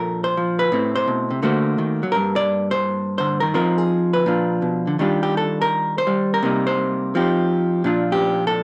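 Solo jazz with a playful, warm mood, played by a single vintage hollow-body electric guitar across the full 8.6 seconds of this short passage cut from a longer piece. The guitar sits up front with a dark, clean, picked tone, ranging from G2 up to D5. The feel is a swung eighth-note lilt that stretches and bends with rubato. The harmony moves through rich extended chords, opening on Bbmaj9, passing through Gmadd11, Fm7 and Ebmaj9, and settling on Bbmaj7 at 7.8 seconds. The sound is dry and close, in the manner of a 1970s studio recording, with only a light touch of reverb around the instrument.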